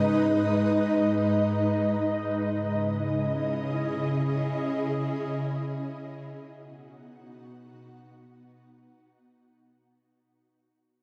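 An airy, detuned synth pad plays solo from the start, its full-bodied, slow-blooming tone softened by ensemble chorus, its own reverb and tape echo, and sitting up front in the mix. This hazy, ethereal hip hop excerpt drifts in free time through G#m, C#madd9 and B. A moderate plate reverb and heavy echo wash over the passage as it fades out across its 10.1 seconds.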